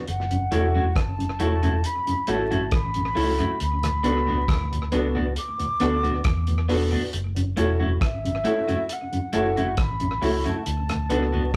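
A straight, unhurried 4/4 roots reggae groove from a damped 70s drum kit with tape echo on hi-hat, kick and rim click sets a hypnotic, meditative mood under a round, foam-muted bass, a lightly overdriven tonewheel organ with chorus vibrato and slow rotary speaker, a picked guitar at the edge of break-up, woody, slightly detuned upright piano stabs and an airy, distant flute melody with a crisp chiff, all circling F#m7 and D6 in a rough rehearsal-room sound with vinyl crackle and wet reverb.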